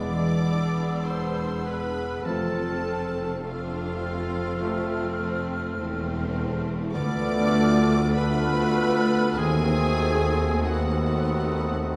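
Yearning and melancholic, this slow classical excerpt moves at a rubato 40-52 BPM in 4/4, with a smooth, lightly vibrato violin section carrying the melody high above lush bowed violas, a second violin section, and a rich, close cello section joined by double basses on the bass. Around them, oboe, clarinet, a small flute group and bassoon add background lines. Mellow French horns and a very quiet, bright trombone section hold sustained chords, and a ringing concert harp plays arpeggios through E7, F, Bm7b5/D and D#dim7, all heard from further back in a reverberant recital hall.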